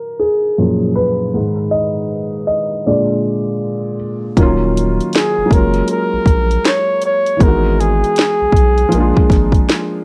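A worn, warbling cassette haze with a filter sweep opens this cosy, dreamy lo-fi hip hop fragment, where a soft, felt-muted upright piano with audible action noise plays alone until a punchy, overdriven house drum kit and a deep, saturated sub bass arrive at 4.4 seconds, followed at 5.2 seconds by a breathy, close-miked flugelhorn melody in a jazz style over swung, jazzy chords like F#maj9 and A#7.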